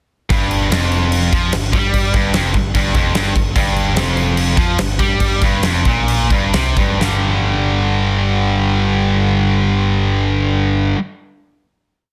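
Aggressive and heavy, this short hard rock piece opens with two bright, distorted electric guitars playing a picked single-note riff over a Gm chord, doubled by a growly, overdriven picked bass driving in eighth notes. A huge arena drum kit with a fat snare, punchy kick and crash cymbal powers a big rock groove, slowing down from 3.6 seconds until it stops at 7.1 seconds. The guitars and bass then ring out on a final G5 chord in a small room ambience, all within a dense, heavily limited modern master.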